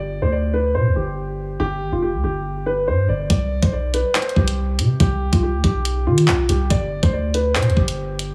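Drill hip hop excerpt at 141 BPM with a tense, dark half-time feel, where a mellow, boxy grand piano carries the melody through tape echo over a deep, sine-like 808-style bass with long decaying notes, and an up-front electronic drum kit of knocking kick, tape-warm hi-hats and handclaps joins at 3.3 s, all set in a heavily compressed, radio-like mix with studio reverb.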